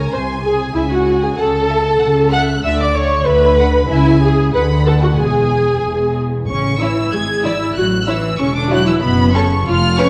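Lively and graceful, this quick classical-period movement for string orchestra moves at 95 BPM in 2/4 in A major, shifting into a new section at 6.5 s. A rich, smooth violin section carries the melody from a distance while a second, lush violin section with a soft attack plays an expressive second line. An up-front, focused viola section provides the accompaniment, and a woody cello section and a close double bass section anchor the bass, all bowed with vibrato. The sound sits in a wet scoring-stage reverb and has the worn, warbly pitch drift of old cassette tape.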